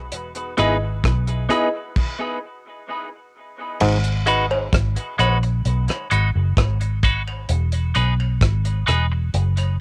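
Dub reggae with a heavy, spacious mood, cut from a longer piece and recorded at home on cassette with light reverb, as a filter sweep runs through it. A dark, round, foam-muted fingered bass and a dry, tight-kicked 70s drum kit sit up front beside a clean, compressed electric guitar, while a brilliant grand piano adds brief stabs with long sustain and audible action noise, and the opening break stops dead at 2.0 seconds. At 3.8 seconds a stringy auto-wah clav flickers briefly through dub echo and plate reverb, and a jawbone-type rattle and cowbell with maracas and group handclaps join in the background, carried on dub echo.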